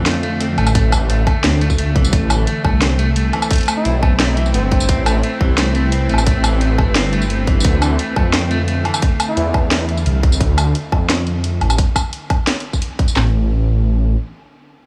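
Dark and spacious, this excerpt from a longer half-time drum and bass track at 174 BPM opens on a drop, where a deep, rumbling detuned saw bass and two layered electronic drum kits, one with a tight kick, handclaps and cracking snare up front, the other adding hi-hat, tambourine and woodblock, drive beneath a tense, string-like drone with sidechain pumping, twangy slightly broken-up guitar arpeggios in diffuse ambient delay, and a very quiet, veiled bucket-muted trumpet in jazz style at 3.8 seconds, all set in a dreamy mix soaked in huge reverb over Dm and Am chords until the harmony falls away at 13.2 seconds.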